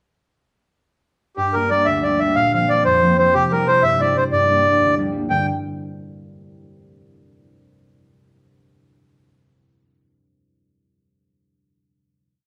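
Set in a moderately reverberant large studio where the duo plays live together, this short, complete Celtic folk jig in G dorian moves at 122 BPM in 6/8 with a dark, lively and wild mood, as a reedy, dry-tuned accordion carries a clear, up-front, motif-based song melody from 1.4 to 5.5 seconds over a mellow, ringing, thumb-plucked concert harp whose oompah bass notes and chord figures follow Gm, Bbsus2 and C before settling on a final chord that lets the harp ring on alone until 7.2 seconds.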